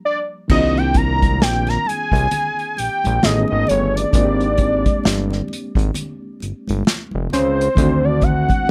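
A dark, lightly reverberant production frames this soulful, late-night neo-soul R&B fragment in C minor at 66 BPM with a swung 16th feel, where a barky, reedy electric piano with medium tremolo plays the chords from 0.0 seconds, a fat, detuned sawtooth analog lead carries the melody from 0.1 seconds, a thick, saturated analog bass with a filter sweep and an airy acoustic drum kit played with bundle sticks enter at 0.5 seconds, and hard-handed congas sit in the background, over harmony moving from Cm11 through Amaj9#11 and Abmaj9#11 to D7b9.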